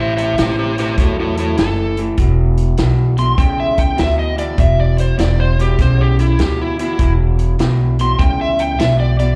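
Electric blues shuffle at 100 BPM in swung 4/4, soulful and gritty, heard as a live club gig through the venue's PA. An overdriven slide guitar, up front with analog delay and slapback echo, takes a solo over a dark, slightly broken-up, lo-fi riff from a guitar through a small old amp, also touched with slapback. A woody pizzicato upright bass sits forward, and a vintage kit with punchy kick and medium-tuned snare joins at 0.2 seconds, while the harmony moves from A5 to E5 at 2.2 seconds in this short cut from a longer piece.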